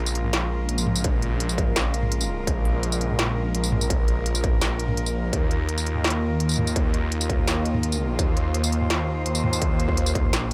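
A swirling, thick, detuned saw bass with phaser sits up front in this heavy, cinematic half-time drum and bass fragment, joined by a clanging industrial drum kit of snare, smooth hi-hats, tambourine and toms, a distorted electronic kick that enters at 1.0 seconds and drops out at 10.3 seconds, and a rich, floating bowed cello section holding sustained Bbm7 and Ebsus2 chords with sidechain pumping, the whole mix kept dry.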